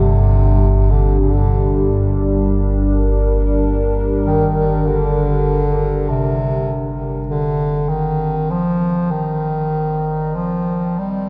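Dark ambient drone at a slow 49 BPM in G minor, desolate and unsettling, where a mellow, smooth-topped bass clarinet carries an up-front melody through delay over a deep, ominous rumbling drone on G1 with phaser and subtle chorus, while a moody, detuned analog pad holds sustained chords through chorus and phaser and fades out from 4.1 seconds, the harmony moving from Gm to Cm at 7.3 seconds, all bathed in a wet cathedral reverb and the warbling pitch drift of worn cassette tape in this brief cut from a longer piece.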